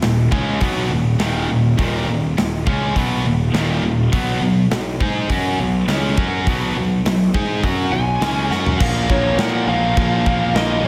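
A tight, bright distorted guitar riff opens this aggressive, heavy metal excerpt at 102 BPM in Eb minor, joined by a high-gain guitar sitting in the background and driven by a growly, fuzz-soaked picked bass and an up-front acoustic rock kit with a punchy kick, medium-tuned snare, china and crash cymbals, and a pumping big-room sound. The riff moves from Eb minor to B5, and a dark, high-gain lead guitar melody enters at 7.9 seconds. A drum fill at 8.5 seconds leads into a shift to Bb5 at 8.8 seconds, all set in a moderate hall reverb with a big arena feel.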